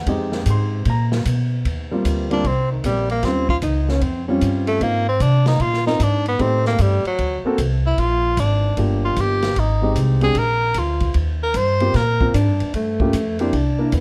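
Small-group swing and bop jazz at 152 BPM in Eb major with a playful mood: a concert grand piano with deep bass accompanies over woody pizzicato upright bass and an open drum kit of dark cymbals and boomy kick, while an edgy, forceful tenor saxophone with vibrato carries the melody from 2.3 to 12.3 seconds and a breathy, close-miked alto saxophone with subtone adds a second line, briefly at 3.6 seconds and again from 12.3 seconds to the end of this cut from a longer piece, set in light reverb within a dark production.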